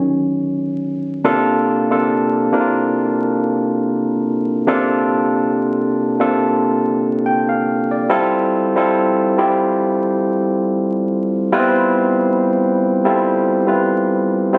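A barky tine electric piano, lightly overdriven through a combo amp and sitting up front with a slapback echo, carries this soulful, sultry R&B fragment alone from start to finish, spanning C3 to G5 over a gently swung 16th-note feel in 4/4. It opens on Ebm7, moves to C9sus4 at 1.2 seconds and then to G9sus4 at 8.1 seconds. Cut from a longer piece, it has the candid sound of a phone recording in the studio, with light digital reverb and a layer of vinyl crackle.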